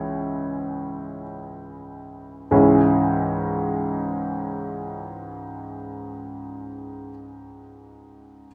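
A clear, up-front grand piano opens this brooding, bittersweet fragment of a romantic classical character piece in free time, slowing over its first 2.5 seconds before a second passage begins at 2.5 seconds and runs to 6.2, the present solo voice ringing through a wet recital-hall reverb.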